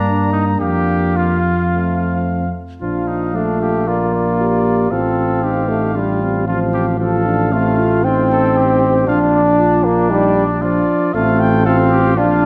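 From the opening moment, a full brass quintet plays together in a stately classical passage cut from a longer piece: a trumpet with a soft attack carries the melody above a clear, punchy second trumpet, while a brilliant trombone and a mellow French horn, set distant and roomy in the background, fill the accompaniment, and a dark, smooth-topped tuba sits up front on the bass, every part touched with light vibrato and bathed in a moderate scoring-stage reverb that lends the production a warm, shadowed glow as the harmony moves from G minor through Bb and F to end on F over A.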